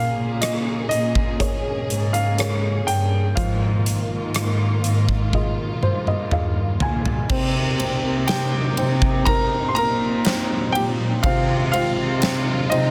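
A longing, emotional pop ballad in F minor at 61 BPM opens with a natural-toned baby grand piano carrying the melody through tape echo over a woody, slightly detuned upright piano, distant lush vibrato strings holding sustained chords, and a reedy, gut-string chamber cello section on bass. A punchy, up-front arena drum kit with bright cymbals enters at 0.4 seconds, and drums and upright piano share a fill from 5.3 to 7.3 seconds before the harmony moves from Bbm7 toward Cm7, all in a dry, dense, heavily limited modern mix cut from a longer piece.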